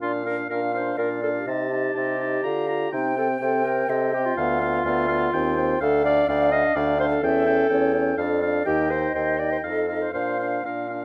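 A quick classical-period movement for wind quintet in Bb major at 124 BPM in 3/4, played with rubato and a stormy, dramatic mood, cut from a longer piece and moving from Bb through diminished passing chords and Eb6 to F7 before settling back on Bb at 10.1 seconds. A hollow, pure concert flute carries the melody from 0.5 seconds with vibrato and tongued notes, sitting close-miked yet in the background, while a clear oboe with light vibrato takes the second line from a distant, roomy position. Beneath them a soft-attacked clarinet with a smooth top and a warm French horn with light vibrato fill in the accompaniment, and a roomy bassoon anchors the bass up front, all under light reverb and close, detailed microphones.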